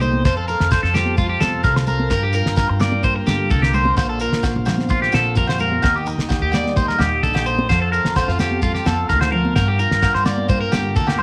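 Set in a small, intimate room, this short cut from a longer highlife guitar band piece moves at a danceable 129 BPM in a straight 4/4, carrying a carefree mood over a progression that cycles from F through Gm7, Bbsus2 and Eb. Up front, an electric guitar at the edge of break-up spins twangy picked arpeggios coloured by phaser and slapback echo, while a fingerpicked steel-string acoustic guitar adds a full-bodied jumbo accompaniment beneath it. A woody, thumpy upright bass is plucked pizzicato, and a vintage combo organ with light vibrato holds buzzy sustained chords in the background. High-tuned congas played with soft hands and a grainy, distant shekere sound from the very start, and the damped 70s drum kit comes in at 0.3 seconds with a fat snare and tight kick, dry and mid-forward. Ringing, saturated agogo bells enter at 4.0 seconds, and a drum fill arrives at 11.1 seconds to close the passage.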